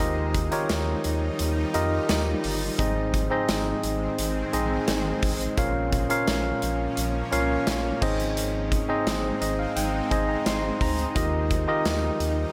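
Romantic and glossy, this 1980s-style pop excerpt moves at a straight 86 BPM in Ab major, with a bright, clean tine electric piano up front carrying the accompaniment through Ebadd9, Ab and Bbm chords and adding a fill from 9.1 to 11.2 seconds. Beneath it, a shimmering, ethereal pad holds sustained chords with slow-attack, detuned swirl, chorus and its own reverb, while a round, deep analog bass anchors the low end. A big, punchy rock drum kit with crisp cymbals, snare, hi-hat, crash and tambourine sits close in the mix, its gated reverb giving the beat that unmistakable period sheen within a lightly reverberant studio sound.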